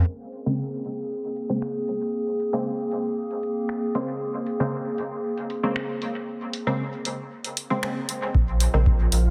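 A straight 4/4 pulse at 116 BPM carries this cavernous, hazy dub techno fragment in Bb minor, where finger snaps and low-passed hi-hats from a layered deep house kit, dubbed out with echo, run beneath a filter-swept, detuned sawtooth chord stab treated with chorus, phaser, sidechain pumping and dub echo, all resting on a warbling, nostalgic lo-fi pad holding a Bbm9 chord and a round sine sub bass that pump together, until an analog, tape-toned kick arrives at 8.3 seconds and a breathy, wind-like tuned noise layer drifts in faintly at 8.5 seconds within a dense, heavily limited mix bathed in echo-chamber reverb.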